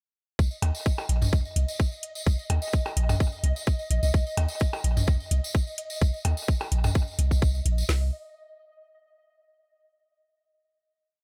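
Sparse, clinical minimal techno opens at 0.4 s with a punchy, syncopated sine sub bass riff pumping beneath a tight four-on-the-floor garage kit with a woody snare, a distant, jingly tambourine and a detuned, chorused gated texture pulsing on one held high note; at 0.6 s an overdriven electronic hi-hat and tape-echoed blips and low toms in cross rhythm join, and the groove gives way at 7.9 s to a final note.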